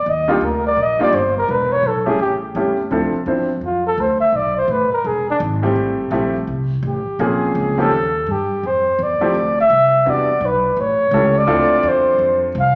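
Small-group swing and bop jazz in D minor at 168 BPM with a cool, swinging mood, this excerpt features a mellow, softly attacked flugelhorn up front that carries the melody and takes a solo from 2.9 s, over woody, thumpy pizzicato upright bass on gut strings and an intimate baby grand piano with audible action noise, accompanying from 0.3 s with a gap before returning at 5.6 s, all set in a large studio reverb.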